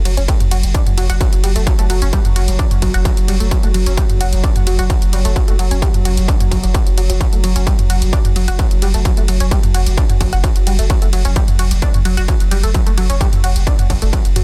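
Dense, heavily limited and set in a digital ambience, this excerpt of driving, hypnotic and relentless peak-time techno runs at 130 BPM in F# phrygian. It is built on a distorted, overdriven electronic kick up front and an overdriven, layered drum kit of hi-hat, ride cymbal and toms. Beneath them sits a deep, round sine sub bass with overdrive, low-pass filtering and sidechain pumping. A tight, wave-folded sequenced synth riff of detuned sawtooth and pulse tones carries chorus, phaser, dub echo and pumping. A nasal, evolving analog drone with pulse-width modulation, chorus and pumping sits in the background.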